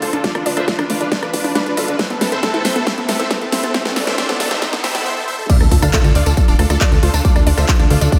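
This euphoric, emotional uplifting trance excerpt opens mid-build, with a huge, detuned supersaw lead carrying the melody in the background through a phaser, tape echo and a low-pass filter, while a lush supersaw pad holds slow-attack chords beneath it and a bright, wave-folded unison pluck spins arpeggios. A punchy, funky analog bass with a fast filter pluck anchors the low end, and a big-room dance kit of huge snare, metallic hats, handclaps, rim clicks, tambourine and crash cymbal rolls through a drum fill, joined at 0.2 seconds by a layered, punchy electronic kick. Filter sweeps on the supersaw and arpeggio sounds drive the build-up over a Dm to Amadd9 progression, with a very quiet riser creeping in from 0.7 seconds. At 5.5 seconds the drop lands on Dm with an impact, and the sidechain pumping on the lead, pad, pluck and bass pushes the groove forward. The whole mix is soaked in a lush hall reverb that gives it a dreamy, spacious sheen.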